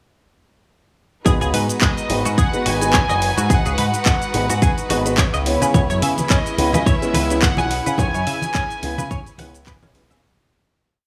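Nu-disco in G# minor at 107 BPM, groovy and sensual, built almost entirely on a drop from 1.3 seconds that shifts from G#m7 to C#m7 and fades out from 7.2 seconds. A punchy, up-front four-on-the-floor electronic kick and a house kit of warm hats, cabasa and claps on a disco backbeat sit under a bright, funky syncopated bass with an envelope filter, a twangy clean electric guitar running a 16-step sequence through analog chorus, and boxy, intimate grand piano stabs with audible action noise, pumping and delay. A rich string pad holds sustained chords in the background, while a floating, sul tasto violin section plays call-phrase motifs through delay, and soft-handed congas join at 5.7 seconds in a small, lightly reverberant room.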